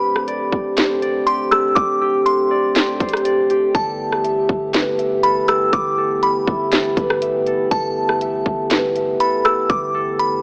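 A delicate, tinkling FM synth tine bell carries the melody from the first moment, up front with chorus, a low-pass filter and tape echo, over sustained chords from a dark French horn section whose soft-attack, classical-style ensemble sound pumps against the sidechain. Alongside them, a bright, ringing concert harp plays thumb-plucked arpeggios through its own low-pass filter and tape echo, while a deep, sine-toned 808-style bass sits low and sustained. At 0.2 seconds an electronic trap drum kit enters up front, with a hard-clipped kick, sharp snare, rim clicks and warm hats. This atmospheric cloud-rap passage moves at 121 BPM in a half-time 4/4 feel in G major, its floating, blissful mood resting on a D7sus4 chord that gives way to G69 at 3.7 seconds. A moderate, lush hall reverb and an AM radio coloring wrap the whole mix in a hazy glow, and the passage is cut from a longer piece.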